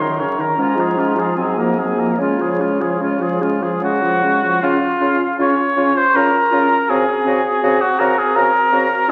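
The mellow oboe stands out most, sitting up front with a light vibrato, soft attack and smooth top as it carries the second line in this melancholic, elegiac excerpt from a slow romantic movement for wind quintet in Db major. Above it, the concert flute sings the melody with a pure tone, expressive vibrato and soft attack, yet it sits in the background. A close-miked, clear clarinet and a distant, roomy French horn with light vibrato fill out the accompaniment in classical style, while a clear bassoon with light vibrato holds the bass. The tempo moves between 72 and 82 BPM in 3/4 with a rubato feel, and the harmony settles onto Db at 2.2 seconds before shifting to Ab7 over a Db bass at 6.9 seconds. A wet recital-hall reverb surrounds the ensemble, and the whole passage carries the crackle and aged character of a very old 78 rpm record.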